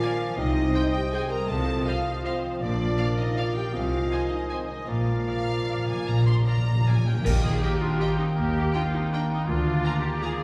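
Elegant and sweeping, this orchestral ballroom waltz in Eb major moves in a rubato three-four between 143 and 178 BPM. A lush, focused violin section carries the melody while oboe, hollow flute, clarinet and a smoother second violin section weave supporting lines. Beneath them, violas and a very quiet bassoon fill out the accompaniment, a mellow French horn section holds sustained chords, and a ringing harp spreads arpeggios across a broad range. Cellos and double basses anchor the bass from 0.4 seconds, joined by hard-mallet timpani from 2.6 seconds that break into a fill before a band accent at 7.3 seconds opens a new section on Eb. Dark cymbals and concert bass drum add weight between 4.9 and 8.0 seconds, all set in a reverberant scoring-stage space heard from further back, with a layer of vinyl crackle, in this excerpt cut from a longer piece.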